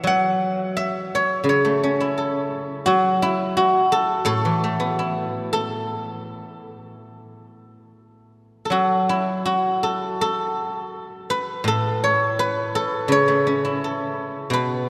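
A solo guzheng, played with fingerpicks, sits up front in this elegant, flowing fragment of Chinese traditional music, cut from a longer piece. Its acoustic tone is silvery and ringing, covering a span from A2 up to F#5 in an A gong mode, with the instrument tuned to A4 = 443 Hz. The pulse hovers around 84 BPM in 4/4, but the playing is rubato, so time stretches and breathes freely. A cathedral reverb with a long 4.8-second tail places the guzheng in a vast, echoing space, letting each note hang in the air. The music opens with one section and moves into a second at 8.7 seconds, continuing until the fragment ends at 14.9 seconds.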